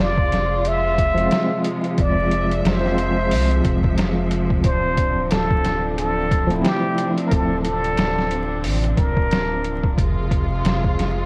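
Trip hop at 90 BPM in D minor, this hypnotic, cinematic fragment of a longer piece moves with a lazy 16th-note swing over chords shifting from Fm to Dm7 and back. A plunger-muted trumpet carries the jazz-style melody up front, breathy and wah-tinged with vibrato and a soft attack, its phrases trailing tape echo until it drops out at 9.9 seconds. Beneath it, a bowed studio string ensemble holds rich, focused sustained chords roughened by vintage 12-bit sampler grit, while a deep, round dub sub bass hums with tube saturation. The pitched-down, compressed sampler drum kit sits forward with a thumpy kick, medium-tuned snare and hi-hat, pushed into overdrive. From 1.1 to 7.7 seconds an overdriven tine electric piano played through a combo amp adds gritty accompaniment with medium tremolo and tape echo, and the whole recording is dry, warbling with worn cassette pitch drift and vinyl crackle.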